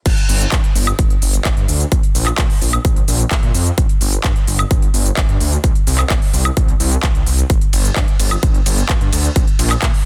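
A dense, heavily limited modern master with digital ambience and a high-pass filter sets this powerful, euphoric festival progressive house excerpt in a straight four-four drop that runs from 0.1 seconds to its cut-off. Up front, a punchy electronic kick drum, layered and tape-warm, anchors the groove throughout. A big-room dance kit surrounds it with crisp hats, crash and ride cymbals, handclaps, shaker and woodblock, all with a produced, layered electronic sheen. The detuned saw bass is thick and lush, built from unison sawtooth voices blended with sine, with a fast attack and sustained notes spanning G1 to Bb2. Chorus thickens that bass further while sidechain pumping makes it breathe, giving the drop its surging, euphoric lift.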